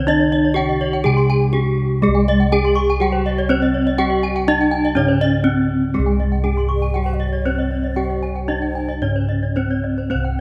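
A straight 4/4 pulse moves between 109 and 126 BPM in this ceremonial, brilliant Balinese gamelan fragment in C pelog, taken from a longer piece. Up front, a bronze metallophone struck with a horn mallet carries the melody, its paired tuning producing shimmering beats in a bright, ringing tone. Bossed gongs hold the bass beside it with a round, mellow sound from padded beaters. A lower metallophone played with a wooden mallet supplies accompaniment in the background. Two more horn-mallet metallophones spin airy arpeggios higher up, the topmost sitting further back. From 6.8 to 8.9 seconds, a low bamboo xiao adds a breathy, unsteady second line with vibrato and a crisp attack, and the close, detailed sound carries a light reverb.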